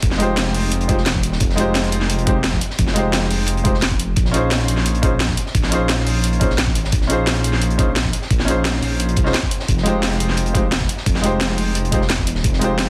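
Melancholic and lush, this liquid drum and bass passage, cut from a longer piece, moves from Fm9 to Bbm11 and back over a deep, rumbling detuned saw bass with tube saturation, while a soft felt-muted upright piano with digital delay enters at 0.2 seconds, sitting intimate and up front. The drums layer a thumpy, overdriven electronic kick with a produced drum and bass kit of cracking snare and bright hats, plus a dark, gritty breakbeat kit with a high-tuned snare tucked in the background. Light small-room reverb surrounds a dense, heavily limited modern master.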